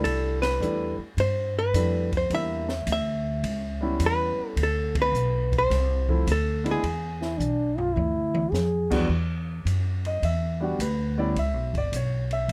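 Cool and swinging, this short excerpt of small-group jazz moves at 106 BPM in 4/4 with a firm swing, the band striking accents at 0.3 and 4.8 seconds as a dark, clean hollow-body electric guitar carries the melody up front until 8.5 seconds over a natural grand piano, a woody pizzicato upright bass, and an acoustic drum kit with dark cymbals, a high-tuned snare and a boomy kick. A mellow trombone with light vibrato enters at 7.2 seconds for a brief second line while the drums play a fill, and the music settles into E minor from 9.1 seconds. The sound is close and detailed, with little reverb.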